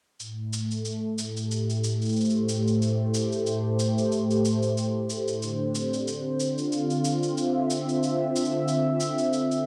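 A lightly swung 4/4 shaker pulse at 92 BPM, electronic yet re-recorded in a large room and sitting well beneath the rest, runs under an up-front, detuned sawtooth analog pad with a smooth soft attack, long release, chorus and a moving notch, holding sustained chords that shift from Am7 to Dm9 at 5.4 seconds in this wistful, delicate folktronica excerpt in A minor, its dark, warm production bathed in a moderate echo chamber reverb.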